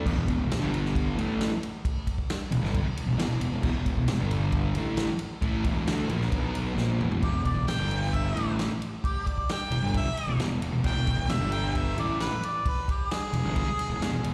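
Raw and swaggering, this garage rock cut built on E5 and G5 power chords sets a double-tracked, distorted fuzz guitar riff with slapback echo against a growly, overdriven fingered electric bass and a vintage drum kit with dark cymbals and a tight kick, and after a drum fill at 6.8 s a clear harmonica solo with light vibrato and tape echo enters at 7.2 s, the mix heard like a live gig through the venue's PA with recital hall reverb.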